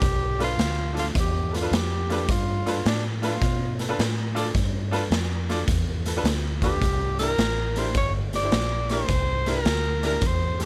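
Electric blues shuffle at 106 BPM with a soulful, gritty swing, cut from a longer piece, where a mellow tenor saxophone carries a smooth, subtoned solo melody with light vibrato over a dark, round, foam-muted fingered bass and a punchy, saturated garage drum kit sitting up front in a pumping stone room, while a brilliant, woody upright piano enters at 0.4 seconds with short-sustained accompaniment as the harmony moves from G7 to C7 at 6.8 seconds, all in a dry mix.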